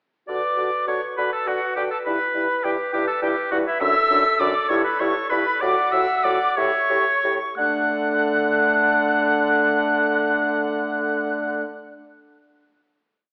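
Lively and graceful, this short, complete classical-period movement for wind quintet is in D major, in a straight 6/8 at 58-69 BPM counted in dotted quarters, with every part entering together at 0.3 seconds. An airy silver concert flute with vibrato and a soft attack carries the melody, a vintage-toned oboe sits up front doubling the tune at the octave, the smooth-topped clarinet adds a counter-melody and sustained chords, the French horn supplies repeated notes and held chords, and a distant, roomy bassoon with vibrato lays down repeated and sustained bass notes. The tempo slows from 2.9 seconds before the music settles on a final D chord at 7.6 seconds, all heard through a wet scoring-stage reverb and an AM-radio sound.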